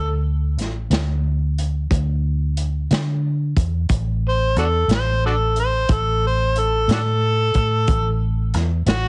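An overdriven harmonica and a muted electric bass open this gritty, swaggering slow blues together, with the drum kit joining at 0.6 seconds in a straight 12/8 at 60 beats per minute. The amplified harmonica carries the melody as a jazz-style solo throughout the excerpt, its overdriven tone shaped by vibrato, scooped notes and tongue slaps and set in a plate reverb. Underneath, the vintage fingered bass sits up front with a round, foam-muted, amped sound. The crunchy breakbeat kit, captured in a small room, plays hi-hat, a tight kick and a medium-tuned snare, with a saturated, dark character and a rolled-off top. The overall sound is dry and heavily compressed, with a radio-like band that tops out at 10.8 kHz and gives the short cut a close feel.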